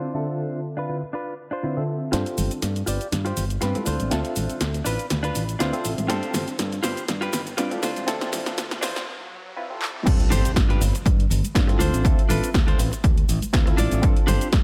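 Filtered disco house at 121 BPM in G mixolydian, funky and feel-good, opens with a reedy tremolo electric piano and a clean, picked electric guitar riff with vintage sampler grit, both pumping under a low-pass filter sweep, before a bright fingered bass, an overdriven analog drum machine with punchy snare, handclaps, hi-hat, cabasa and crash, and soft-handed egg shaker and congas in the background join at 2.1 seconds for a build-up over alternating Dm7 and G7sus4 chords, with a very quiet riser and impact, a short break, and an up-front electronic kick, also with overdrive, arriving at the drop at 10.1 seconds.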